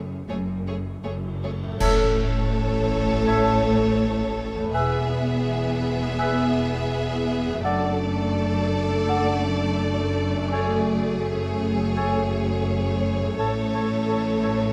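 A lush, vibrato-laden violin section carries the bittersweet, longing melody of this rubato cinematic film-score excerpt at 83 BPM, with a second violin line, distant violas, background cellos and smooth double basses beneath, a very quiet ringing harp playing arpeggios throughout, and at 1.8 s a hollow, airy flute, close-miked clarinet, roomy oboe and dark French horn chords join as bright clash cymbals and concert bass drum mark a brief accent before falling silent by 3.2 s, all set in a moderate scoring-stage reverb.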